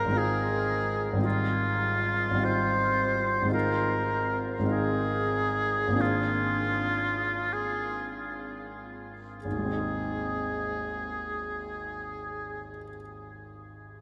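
Classical impressionist duo in Ab major and 6/8, luminous and dreamy, moving with rubato at a slow 28-56 BPM and slowing down from 2.4 to 9.4 seconds. A warm oboe with light vibrato carries the melody up front, while a clear, intimate grand piano, also up front and with its action noise audible, accompanies and then plays alone after the oboe stops at 12.7 seconds. A huge, wet reverb sets the duo in a vast, echoing space as the harmony drifts through Ab6, Ab69 and Bbadd9 over Ab before settling on Ab.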